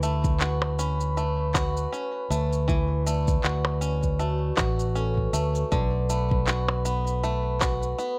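A lightly swung 16th-note groove at 79 BPM in 4/4 drives this delicate, wistful folktronica excerpt, where a twangy, fingerpicked bluegrass banjo plays filtered, delay-touched arpeggios beneath a mellow vibraphone second line with soft mallets, fast motor vibrato, tape echo and plate reverb, while a round, punchy fingered electric bass sits up front, electronic shaker, handclaps and percussion blips keep time, and a deep electronic kick enters at 0.2 seconds over a Dmaj9 that turns to Bm7 at 5.7 seconds, all in a dark production with light reverb.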